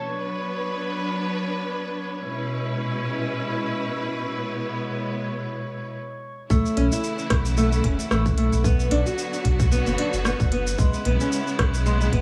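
Lush, bowed studio strings hold sustained Bm and C#m7/B chords with a sidechain pump while a glassy, chorused glass-harmonics texture drifts in the background, then after a brief stop at 6.0 seconds this earthy, organic downtempo piece at 112 BPM with a swung 16th feel brings in dark, fingerpicked nylon-string guitar arpeggios through digital delay, a round, tube-saturated sub bass, a tight electronic kick and smooth hi-hat, rim click and shaker at 6.5 seconds, set in a light digital ambience.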